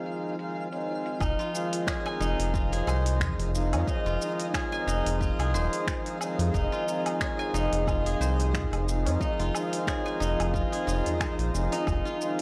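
A meditative, earthy organic downtempo excerpt opens on reedy, breathing harmonium chords with sidechain pumping and analog delay, a smooth, detuned analog pad in the background and a very quiet, twinkling granular shimmer, while a deep house kit of finger snaps, metallic low-pass-filtered hats, shaker and woodblock slips in and a distant, low-tuned tabla rings from a large room, until at 1.2 s a silvery, fingerpicked steel-string zither, a round, dark, up-front analog bass and a deep, tape-warm electronic kick arrive, all within a gritty, transformer-saturated hardware sound.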